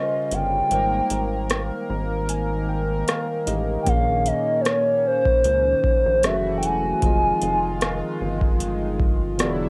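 A hollow, woody clarinet-like synth lead with chorus and analog delay carries the melody up front in this sensual, late-night contemporary R&B excerpt in F minor at 76 BPM with a lightly swung 16th feel, over a clean tine electric piano that plays a fill from 1.5 to 3.9 seconds, a shimmering chorused pulse-width pad, a rubbery square bass and an overdriven, booming analog drum machine with deep kick, metallic hats and rim click, all moving through chords from Eb13 to Fm9 with the lo-fi character of a home cassette recording.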